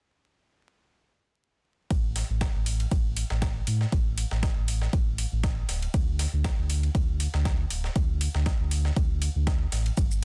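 Late-night and warm, this deep house excerpt moves at 119 BPM in 4/4 with a light swing on the sixteenths. From 1.9 seconds a deep, full sine sub bass with an added octave sits up front, its fast attack and sustained notes ranging from D1 to A2 and pumping under sidechain compression. An electronic kick, deep, layered and tape-tinged, lands alongside it in a small room, while metallic hi-hats and shaker join at 2.2 seconds. Further back, a gritty, compressed breakbeat-style kit adds ride cymbal and a high-tuned snare, both high-pass filtered, with the cymbals also pumping. A digital ambience frames the sound, and the dense, heavily limited master carries a layer of vinyl crackle.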